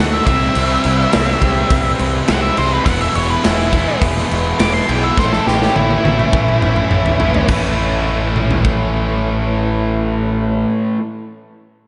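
A big arena sound steeped in lush hall reverb frames this swaggering, confident classic rock passage at 104 BPM in 4/4, cut from a longer piece. A dark octave-fuzz lead guitar sings a solo melody until 7.5 s over three picked rhythm guitars, two bright and distorted and one biting and double-tracked, while a round fuzz bass anchors the low end and a very quiet tonewheel organ with key click and slow rotary chorus holds sustained chords. An up-front acoustic kit with a punchy kick enters at 0.3 s and rolls into a fill from 5.2 s as the harmony moves from C through E to Aadd9.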